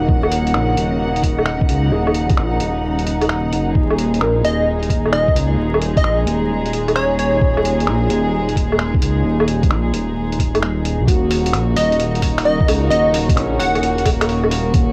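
Cassette-worn and flecked with vinyl crackle in a snug booth, this rainy, wistful future garage excerpt at 131 BPM in Eb minor swings over a muffled, thumpy electronic kick and a pitched-down sampler-style kit of finger snaps, hi-hat and woodblock, while a deep, rumbling detuned saw bass and a gut-toned, reedy string section pump under sidechain, a soft felt-muted upright piano sits very quiet on an Ebm7, an airy, wind-like noise texture breathes in the background until 11.1 s, and a punchy, catchy plucky unison lead with tape echo enters at 4.4 s and returns at 11.8 s.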